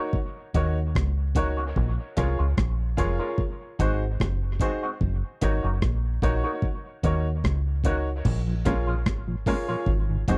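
Deep and heavy, this dub reggae excerpt opens with brilliant baby grand piano stabs soaked in dub echo, soon joined by a gritty, overdriven sampler-style breakbeat kit with a thumpy kick, crash, hi-hat and rim clicks sitting up front. A dark, round fingered bass anchors the low end beside a twangy, scooped electric guitar through an envelope filter with harmonic tremolo and dub echo, while a soft, flute-like tonewheel organ with chorus vibrato and slow rotary speaker enters at 8.5 seconds. The sound is dry and close, like a 1970s studio session, with chords moving through Ebm7, Bbm7, Ab7 and Gb6.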